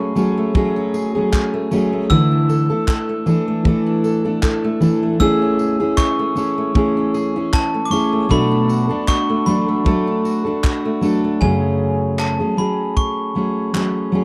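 A fingerpicked jumbo steel-string acoustic guitar sits up front with a full-bodied, warm tone, carrying the accompaniment across the whole 14.2 seconds of this tender, wistful acoustic pop clip, cut from a longer piece. Alongside it, a second fingerpicked concert guitar plays quieter arpeggios until 12.0 seconds. A glockenspiel struck with brass mallets adds a bright, sparkling second line high above, its bell-like ringing tone close-miked and dry. A natural country drum kit enters at 0.2 seconds with a punchy kick, tambourine and handclaps, sounding airy and polished in an acoustic studio room. The gently swung groove moves through minor, suspended and seventh chords before returning to its opening chord at 11.4 seconds, all captured in a dry, close 1970s-style studio sound.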